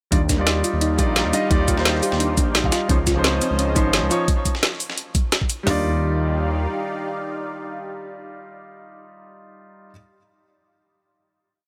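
Liquid drum and bass at 173 BPM in Eb major, uplifting and dreamy, this whole short piece opens straight into a drop over Ebmaj9 and Dbmaj9. Two overdriven garage drum kits drive it: one up front with a knocking kick, woody snare and two-step pattern, the other rolling with shaker and metallic hats. Beneath them sits a gritty, compressed sampler-style breakbeat in the background, along with a menacing detuned saw bass with a filter swell and dotted rhythm. Above, an intimate concert grand piano plays syncopated chord stabs with audible action noise and digital delay, a lush phased unison pad sustains chords, and a tine-like FM pluck arpeggio loops six steps against the bar. At 5.7 seconds the music settles onto a final Ebmaj9, the bass falls away by 6.7 seconds, and the piano rings on until 9.9 seconds.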